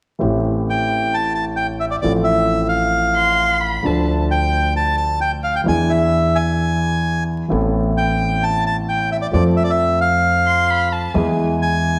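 A rubato pulse in four drives this tense, passionate tango fragment, with a warm, up-front grand piano laying down the accompaniment over a woody, growly pizzicato upright bass. A reedy, dark bandoneon carries the smooth melody close to the listener from 0.7 s, while a rich, bowed violin adds an expressive, soft-attacked second line with vibrato and portamento in brief passages at 3.2 s and 10.5 s. A wet recital hall reverb gives the sound its bloom, and vinyl crackle hangs over it all.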